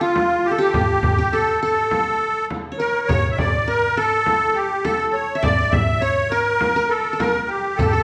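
Longing and soulful, this short excerpt of an Arabic maqam ensemble in A maqam hijaz moves at 102 BPM in a straight 4/4, with a reedy, shimmering musette accordion carrying the melody up front while a bright-edged qanun, played with fingerpicks and ringing with triple strings, traces a second line alongside it. A crisp metal-shell darbuka sits distant in the background, and a deep, large frame drum played with soft hands sounds close from 0.2 s to 7.9 s. The band plays live together in one room, wrapped in a wet large-studio reverb that lingers for about 1.4 seconds.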